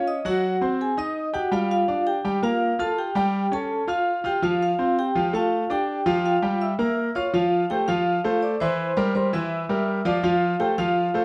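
A ringing vibraphone, struck with medium hard mallets and shimmering with a medium motor vibrato, carries the sunny, festive melody of this brief Latin fragment at 165 BPM in F major. It is backed by an up-front, brilliant concert grand piano with deep bass, both set in a large studio room with moderate reverb and a dark overall production, as the harmony moves through a second section from 7.3 seconds and comes to rest on F at 10.2 seconds.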